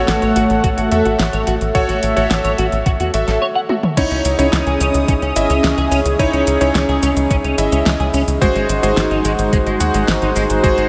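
Synthwave at 108 BPM in C# minor, this driving, moody passage is cut from a longer piece and sits in a dreamy mix soaked in a long cathedral reverb. A smooth analog pad of sawtooth and triangle waves with a sub octave holds sustained chords under chorus and sidechain pumping, while a clangy, vintage electric grand piano cuts through with delayed stabs. Up front, a punchy sequencer bass built from sawtooth and square waves plucks its filtered notes with tube saturation and the same pumping. A clean, twangy electric guitar enters at 0.2 seconds with a picked riff through analog chorus and delay, and a thumpy, sampler-style electronic kick joins at 0.6 seconds beside a layered pop kit with a fat snare, metallic hats, shaker, crash and toms. A drum fill at 3.7 seconds leads into the second section at 4.0 seconds, where the harmony moves from F#m/A to C#madd9 and then to G#7 at 8.4 seconds.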